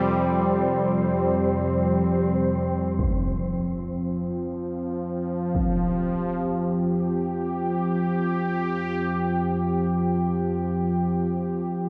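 A bright, detuned sawtooth pad sits up front, holding sustained F5 chords with a chorused, evolving airiness that sweeps across a range from F2 to G4. This is a cavernous, unsettling dark ambient drone in free time, cut from a longer piece. Beneath the pad, an ominous triangle-and-sawtooth drone rumbles low in its own reverb, while a breathy, wind-like tuned noise hovers mellow in the background until 3.0 s, when a huge, low-pass-filtered impact strikes and rings until 5.8 s, all set in a moderate plate reverb.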